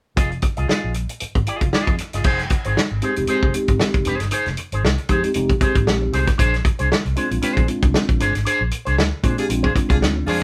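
A tight, mid-forward soul drum kit with a rolled-off top opens this cool, funky 116 BPM excerpt in F dorian with a light 16th-note swing, moving from Fm7 to Bb9, together with a dark, round, foam-muted fingered bass with tube saturation and a bright, twangy envelope-filtered electric guitar. A mellow tine electric piano adds stabs from 3.0 seconds, and a punchy horn section with light vibrato enters at 9.4 seconds amid a closing band accent, the band playing live in one room with moderate ambience.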